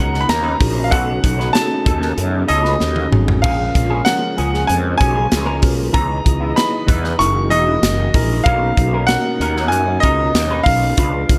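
A straight 4/4 groove at 96 BPM, carried by a modern studio drum kit with a punchy kick, a medium-tuned snare and gated reverb, sets up this glossy, urban slice of polished 1980s jazz-funk pop, cut from a longer piece. A growly fretless bass with ensemble chorus sits up front beside the drums, which add a fill between 2.8 and 3.4 seconds. Over the top, a brilliant grand piano carries the melody in an intimate, close sound where the action noise of the keys can be heard. Beneath it, a worn, slightly out-of-tune tine electric piano with subtle chorus plays mellow accompaniment, while a twangy, compressed guitar riff through an envelope filter and a dark, woody bowed string section with vibrato sit in the background. The harmony moves from Bmaj9 through A#m7, C#m9 and F#13 before returning to Bmaj9, all in light reverb and a small-room ambience.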